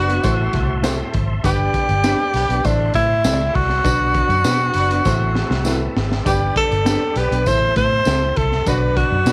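A straight 4/4 groove from a crunchy, gritty breakbeat kit with a punchy kick and high-tuned snare drives this uplifting, danceable 1960s-style soul excerpt alongside a round, foam-muted fingered bass and a jingly, distant tambourine, with a drum fill from 5.1 to 6.3 seconds. Up front, an intimate, breathy tenor saxophone carries the melody with vibrato and scooped, whispered notes, while a tight jazz horn section plays a second line that stops at 8.8 seconds. Behind them sit a woody, slightly detuned upright piano, a clean, dark electric guitar playing stabs, and a fat, percussive tonewheel organ holding sustained chords through a fast rotary speaker with chorus vibrato and key click, over a small room ambience.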